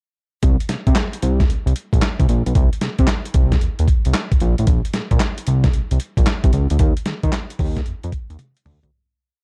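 A hard-swung 4/4 groove at 113 BPM drives this short, complete new jack swing piece, with its 16th notes pushed into a bouncy, punchy R&B feel. A boom bap, sampler-style drum kit and a fat analog bass both start at 0.4 seconds and play together up front through the single verse. The drums sound compressed, pitched down and gritty, with a thumpy kick, a medium-tuned snare layered with handclap, hi-hat and toms, all carrying a tape-like character. The sawtooth bass is thick and detuned, with a fast attack, sustained notes and a filter sweep, and it plays a swung synth-funk line full of muted ghost notes and chromatic approach notes. The production is dark and warm, with little reverb, and the track fades out from 6.8 seconds, closing on a drum fill at 8.4 seconds.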